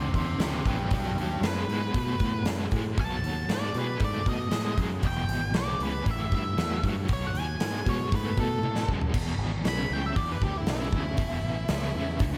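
A straight 4/4 pulse at 117 BPM drives this short cut from a longer blues rock power trio and southern rock piece in E mixolydian, with a driving, raunchy mood. A big acoustic rock kit sits up front with bright cymbals, a punchy kick, a medium-tuned snare, toms, crash and hi-hat. A growling fingered bass, direct and amped with overdrive, holds the low end from E1 to B2. A double-tracked, picked overdriven guitar plays the riff in a low register with tremolo and slapback echo, while an octave-fuzz lead guitar, dark and distorted, carries the melody from D4 to B5 with its own slapback echo. The harmony moves through Em7, Bm7, E, A5 and B7(no3), and a drum fill at 8.6 seconds leads into a lead guitar solo over E7(no3) from 9.1 seconds, all set in light reverb and small room ambience.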